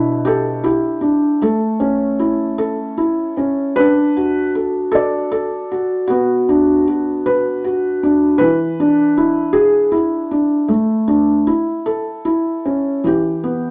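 Bathed in a wet, large-studio reverb, this brief cut from a longer children's lullaby features a solo felt-muted upright piano, soft, dark and intimate, sitting up front with audible action noise and thick felt, as it drifts sleepily and innocently in a rubato 3/4 at 78 BPM in D major through Em7/B, A, D, Bm and E7 before reaching Em at 13.0 seconds.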